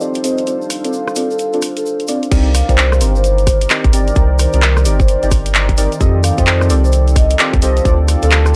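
A thick, saturated sub bass and a tight, layered electronic kick arrive together at 2.3 seconds for the drop of this moody, skippy two-step garage excerpt in C dorian at 130 BPM, with swung sixteenths and chords moving from Dm7 through Cm9 and F9. Up front, a produced garage kit of handclaps, hi-hat, rim clicks and crash plays alongside a ringing, metallic vibraphone melody played with soft mallets and trailed by tape echo. A soft, dark chord stab shaded by phaser and echo joins them, while in the background a warbling vintage analog pad and a deep ambient pad, both sidechain-pumping, and a grainy, bright tube shaker fill out a dry, gritty mix.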